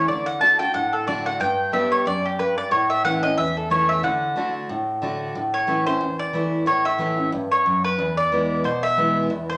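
A woody, mellow mandolin carries the melody up front in this lively, driving bluegrass excerpt, moving at 182 BPM in 4/4 with a light swing on the eighth notes and tuned slightly flat to A4 = 435 Hz. Beside it, a picked dreadnought steel-string acoustic guitar supplies warm accompaniment across the low and middle range, moving through D, G and A before the second section shifts to A and then E at 8.0 seconds. Both sit in a wet, large studio reverb that gives the short fragment a roomy glow.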